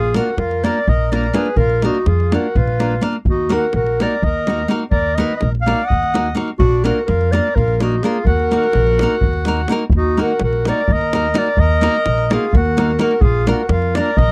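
A fast 7/8 drives this exuberant, wild Balkan wedding-band piece at 252 BPM in eighths, in Eb harmonic minor with a straight feel, heard as a short section cut from a longer piece. A dark clarinet carries the melody up front in a classical style, joined by a reedy, band-limited accordion on a vintage-sounding second line that sits lower in the mix. An upright bass played pizzicato gives a woody, thumpy low end with its gut strings, while a bright, full-bodied nylon-string guitar, fingerpicked in a classical manner, supplies accompaniment close to the front. A deep davul adds close, dry percussion throughout. The harmony swings between Bb and Ebm, and the recording has the dry, intimate feel of a 1970s-style studio session with a touch of light reverb.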